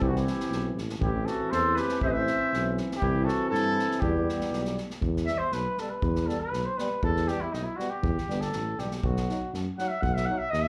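A live gig heard through the venue's PA in a small club room, this fiery, restless Balkan brass band excerpt in E harmonic minor moves at 120 BPM in a straight 2/4, with an up-front mellow trumpet carrying the melody with light vibrato while a punchy clarinet plays a second line until 4.8 seconds. Two euphoniums, one clear and one smooth-topped, sit in the background as accompaniment, and they share the slapback echo heard on the trumpet and clarinet. Beneath them run a prominent tuba bass with vibrato and an unplugged acoustic drum kit played with bundle sticks, its kick firm and its snare medium-tuned. The harmony moves from C to Em at 4.0 seconds, and from 5.0 seconds the trumpet takes a solo as the chords move on to B at 9.0 seconds.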